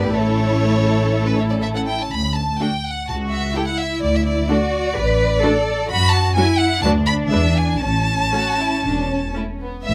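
A close, detailed recording with little reverb frames this spirited, lively excerpt from a quick classical-period movement for string orchestra, moving at 117-130 BPM in 4/4 with a rubato feel. It opens in D major and shifts to A major from 5.9 s, with the harmony passing through F#m, Bm/D and E7 before settling on A. A rich, up-front chamber violin section carries the expressive, vibrato-laden melody, while a focused studio violin section traces a second line beneath it. The viola section sounds lush and somewhat distant, its accompaniment colored by portamento, and it drops out at 9.4 s. Underneath, a smooth, even double bass section sits prominently, joined by a cello section whose warm bowing rounds out the bass register.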